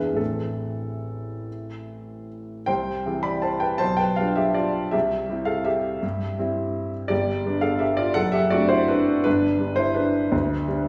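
A concert grand piano carries this short classical waltz on its own from 0.0 to 10.9 seconds, its tone warm, intimate and natural with a deep bass and the noise of its action audible up front. The mood is elegant and nostalgic, moving in 3/4 with a rubato feel as the tempo drifts between 135 and 183 BPM. In C major, the piece opens on an A minor colour before a new section at 2.7 seconds settles on C, passes through G7 over B and returns to C, then leans toward G by way of D7 over F#. A wet, large studio reverb with a 1.2-second decay surrounds the playing, so the room feels heard from further back. The passage is cut from a longer piece.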